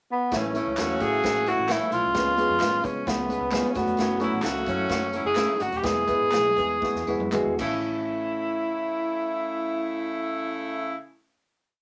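A breathy, intimate tenor saxophone opens this short, danceable 1960s-style soul piece with a motif-based melody, joined at 0.3 seconds by a clear saxophone section playing short riffs, a dark, woody upright piano in close-voiced eighth-note chords with grace notes, a round, foam-muted fingered electric bass with chromatic approach notes, a punchy big-band drum kit driving a soul beat with the snare on all four beats, and backbeat tambourine and handclaps, while a mellow electric guitar adds fills in sixths from 3.3 seconds as the tempo slows into a drum fill and a final hit on A.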